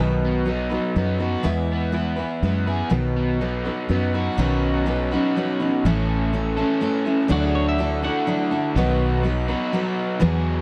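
Jangly and open-road in spirit, this short cut from a longer folk rock and heartland rock piece moves at 123 BPM in a straight 3/4. A full-bodied dreadnought steel-string acoustic guitar sits up front with picked accompaniment, its finger squeak audible, while a double-tracked, crunchy overdriven electric guitar carries a bright riff beside it. Underneath, a fingered electric bass gives a round, foam-muted low end, direct and amped and also up front. At 7.3 seconds a twangy, compressed twelve-string electric guitar slips in with a clean second line, dropping out again at 9.0 seconds. The harmony moves from B through E and back to B, then opens onto Badd9, A and Dadd9 before returning to B, all wrapped in light reverb and a dark, warm production.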